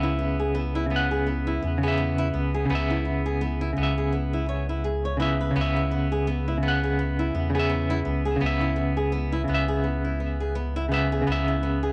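A bright, clean semi-hollow electric guitar sits up front, its picked hollow-body tone shimmering with tremolo and trailing tape echo as it carries the accompaniment across the whole 11.9-second excerpt. Beneath it, a fingerpicked flamenco guitar with fresh strings plays arpeggios, its acoustic body roughened by vintage 12-bit sampler grit and repeated through analog delay. A soft dub sub bass anchors the low end with a deep, round tone that blends triangle and square waves, striking with a fast attack and holding sustained notes. The trip hop groove swings its sixteenth notes and rests on a single minor seventh chord, giving the piece a dark, melancholic stillness. The small room ambience and dry, gritty hardware recording lend the sound a close, textured intimacy, and the passage is cut from a longer piece.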